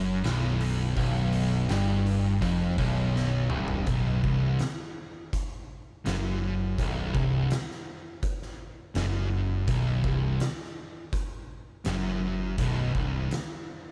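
A bright, double-tracked overdriven guitar bites through the opening riff until 3.9 s, over two thick fuzz guitars grinding low riffs in the background, a growling overdriven picked bass, and an oversized low-tuned acoustic drum kit with a fat snare, punchy kick and gritty saturation in a pumping stone room that plays a fill from 3.2 s, all in a sludgy, ominous stoner and doom metal excerpt at 83 BPM with a dark small-room production.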